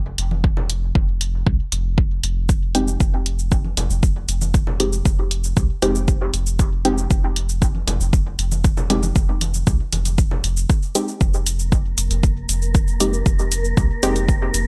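Dub techno at 117 BPM in F minor, this excerpt from a longer piece sits on a single Fm7 chord and feels hypnotic and deep. A round, soft sub bass with sidechain pumping and an up-front, layered electronic kick carry the low end from the opening, joined by a tape-warm hi-hat and shaker and by overdriven congas that carry dub echo and pump along until 10.4 seconds. At 2.7 seconds a muted, detuned sawtooth chord stab enters with a filter pluck, chorus, phaser and dub echo, its filter sweeping so the tone keeps evolving. From 12.0 seconds an airy, breathy wind-like noise texture with ensemble chorus and its own reverb drifts in over the groove. The bright 1980s-style digital production keeps the room dry, leaving the kick and bass firmly in front.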